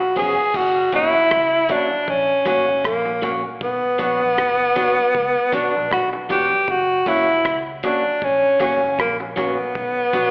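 A breathy tenor saxophone sits up front and carries the melody in this laid-back, serious roots reggae excerpt, its soft attack, scooped notes and gentle vibrato giving it a whispered, intimate quality in a pop style. Beneath it, a clean electric guitar plays accompaniment with a twangy, compressed, picked tone touched by slapback echo. A vintage muted fingered electric bass holds down the low end, dark, round and punchy with a foam-muted, amped character, sitting well back in the balance. The cloth-damped drum kit enters at 0.2 s with thuddy, dry hits, a tight kick, rim clicks, hi-hat and dark crash cymbals, also carrying slapback echo. The whole performance comes across like a live gig heard through the venue's PA, with recital hall reverb and a telephone-like filtering over light reverb, all set to a relaxed swung sixteenth-note feel.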